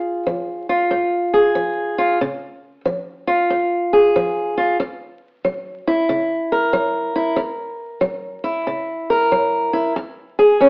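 Swinging eighth notes at a relaxed 93 BPM in 4/4 carry this laid-back, gritty blues fragment, cut from a longer piece, in which a fingerpicked old ladder-braced acoustic guitar plays alone for its full 10.7 seconds, sounding dark, woody and boxy with old strings and sitting up front over a move from C# to F#7, all inside a moderate stone-room reverb with vinyl crackle and an AM-radio tone.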